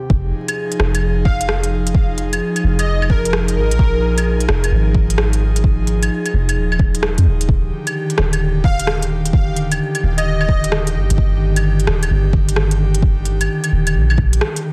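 A deep, overdriven electronic kick sits up front in this ghostly, melancholic future garage excerpt at 130 BPM in F dorian, swung on the sixteenths, joined by a soft, round 808-style bass with sidechain pumping and a crisp, overdriven kit of claves, hi-hat and rim click that sounds re-recorded in a large room. A breathy, chorused pad holds sustained chords moving from Fm7 to Ebmaj7 at 7.5 seconds, breathing with a sidechain pump, while a dreamy, mellow lead with vibrato, chorus and digital delay drifts in from 1.2 to 4.2 seconds and again from 8.6 to 10.7 seconds. The dense, heavily limited master carries light reverb and a layer of vinyl crackle, ending on a brief break at 14.4 seconds.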